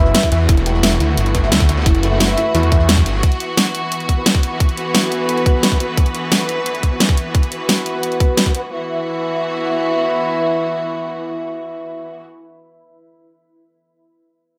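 Lightly reverberant, tense and mechanical, this dark technical drum and bass excerpt opens with a snarling, distorted saw bass, a soft round pluck playing arpeggios, a gritty, faint breakbeat kit and a barely audible downlifter, all falling away by 3.2 seconds. Throughout, lush bowed strings sustain chords beneath mellow, filtered brass stabs with dub echo and a deep, hushed ambient pad, while a tight electronic kick and a dubstep kit with a huge snare drive up front until 8.6 seconds, leaving the strings, brass and pad to carry on to 12.2 seconds.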